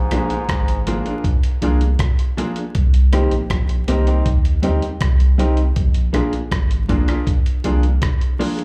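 Roots reggae at 80 BPM, hypnotic and serious, heard as a live gig through a venue PA with club reverb and vinyl crackle, moving through Bb7, Cm7, Eb6 and back to Bb7. A distant, vibrato-laden trombone with scooped notes sounds only briefly, until 1.2 seconds, trailed by dub and slapback echo, while a deep, round sine sub bass sits up front until 8.0 seconds. A dark, clean, fingered electric guitar soaked in spring reverb and dub echo, brilliant, woody upright piano stabs with audible action noise, and a gritty, tape-toned sampler-style kit with thumpy kick, hi-hat and rim click carry the groove.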